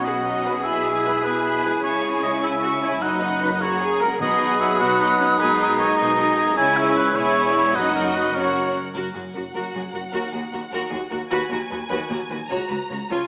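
Violins carry a lush, vibrato-rich melody in 6/8 at 101 BPM over a second violin line, flute, clarinet, oboe, clear viola accompaniment, and distant cello and double bass, as horns sustain chords and mellow trumpets add stabs, timpani strikes and a fill at 13.1 seconds and a triangle near 8.9 seconds mark this triumphant, heroic film-score passage as it moves from B major to F# major, all in a reverberant scoring-stage room heard through a small speaker.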